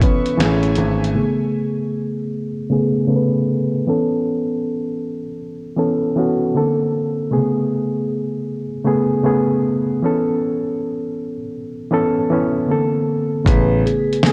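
A faint mains hum and the softened grain of cassette tape sit under a lush hall reverb in this cosy, dreamy lo-fi hip hop piece, cut from a longer work with a swung, unhurried feel. A reedy, clean electric piano carries the accompaniment up front from start to finish, moving through gentle major-ninth and suspended chords, with a filter sweep shaping its tone from 1.2 to 13.5 seconds. At the opening, a gritty sampler-style drum kit with a thumpy kick and fat snare sounds overdriven and compressed, as though re-recorded in a small room. It is joined by a dark, intimate grand piano playing deep bass notes, with its action noise audible, while a soft, floating string section holds faint sustained chords. After 1.2 seconds the electric piano carries on alone until drums and bass piano return at 13.5 seconds. At that point a mellow vibraphone with soft mallets adds a brief, airy, ringing melody, its motor vibrato shimmering through a diffuse ambient delay.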